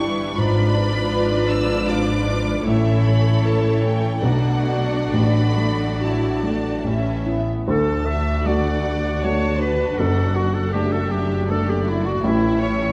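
Classical and passionate, this lyrical passage cut from a longer piece moves in a rubato 3/4 at roughly 64-82 BPM in D major, with tuning set slightly high at A4 = 445 Hz. A polished grand piano sits up front carrying the melody across a broad span, while a lush violin section doubles the tune from a distance, high above, with smooth, even vibrato. A second violin section with a focused top shares a second line, and violas fill the background with rich bowed accompaniment. Double basses and a very quiet, soft-attacked cello section anchor the bass, and a French horn section holds sustained chords in the background until about 7.3 seconds. At 7.7 seconds a bright, vintage-toned solo clarinet steps forward with its own second line as the harmony moves from a searching G#dim7 through A, Bm7, D/A and A toward D, D/F# and a closing A. A moderate scoring-stage reverb gives the ensemble a spacious, blended depth.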